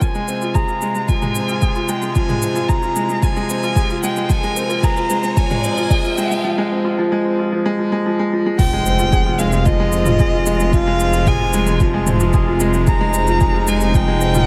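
A straight 4/4 pulse at 112 BPM drives this moving, intimate piano and strings electronica in F minor, anchored by a deep, overdriven electronic kick drum that sits up front with a layered, produced punch. Around it, an organic electronic drum kit adds crash cymbal, shaker and toms, its sound carrying the air of a large room. A bright upright piano plays a woody, brilliant riff through tape echo, while a warm string quartet holds soft-attack sustained chords with light vibrato and an airy, sul tasto bow. Above them, a lone dark violin sings an expressive melody with vibrato and portamento, its top smoothed by a low-pass filter. The opening builds with a very quiet electronic riser from 2.3 seconds, and at 8.6 seconds the drop arrives with an impact and a rumbling, detuned saw bass on a low F that beats and pumps with sidechain compression, all set in a light reverb.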